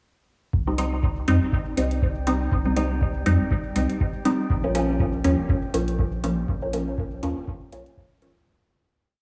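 Nocturnal and hazy, this short dub techno piece settles into a swung groove from 0.5 seconds, with a deep, tape-warm analog kick marking a steady four-on-the-floor pulse. Beneath it, a soft, round sub bass holds sustained dub-style notes, pumping against the kick through sidechain compression. Up front, a filtered chord stab plays detuned, resonant off-beat chords, moving one shape in parallel from C minor to B-flat minor, colored by phaser and trailing dub echoes. Overdriven, metallic closed hi-hats run through a programmed pattern with a backbeat, while from 1.5 seconds a glassy texture of drifting overtones holds a high note in the background, chorused and bathed in its own reverb. A lush hall reverb soaks the mix in a dreamy wash before the piece fades out from 5.8 seconds.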